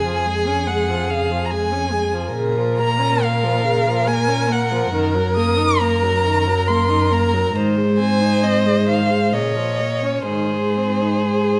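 Classical chamber music, this lyrical and tender excerpt from a slow romantic string quartet movement moves in a rubato 3/4 at 62-72 BPM, with an up-front first violin singing the melody with expressive vibrato, portamento and soft attacks, a close second violin shading a similar warmth beneath it, a smooth, even viola filling the accompaniment, and an up-front cello anchoring the bass with light vibrato, all captured by close, detailed microphones in a moderate recital hall reverb.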